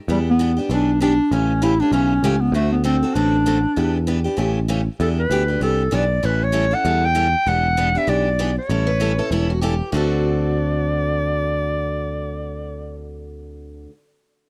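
A breathy, close-miked clarinet carries the melody up front, playing a jazz-style solo with vibrato, a soft subtone and scooped notes that give this playful acoustic string swing its character. Beneath it, a picked steel-string acoustic guitar with fresh strings and a parlour tone keeps up the accompaniment, while a growly, direct electric bass sits prominently at the bottom. The tune swings briskly at 195 BPM in D major, moving through jazzy changes such as Em7, A7, D7 and later A6, Em9 and A9. At 8.9 seconds a second, brighter steel-string guitar joins with a higher line, its finger squeak audible, and the clarinet drops out at 13.2 seconds as the guitars and bass carry on. The sound is dry and intimate, a close small-room studio recording in a 1970s style, taken from a longer piece.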